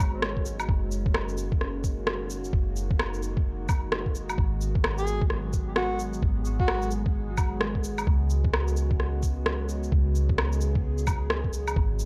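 Melancholic and wistful, this future garage excerpt moves in a swung 4/4 over a slow-moving progression of G#m7, F#69 and C#7sus4 chords. A warbling, lo-fi pad holds sustained chords with a slow attack and long release, its detuned tone colored by chorus, phaser, built-in reverb and a vintage 12-bit sampler grit, and it pumps against the beat. Beneath it, a soft 808-style bass adds a deep, round, dark low end, thickened by tube saturation and pumping in the same way. A muffled, thumpy, pitched-down kick anchors the groove, while an up-front electronic shaker, woodblock and rim click carry an overdriven edge, both re-recorded in a large room. From 5.0 to 6.9 seconds, a breathy, close-miked alto saxophone offers a brief, intimate phrase with an analog delay trailing behind it. The overall sound is dry and gritty, with a cassette-tape character.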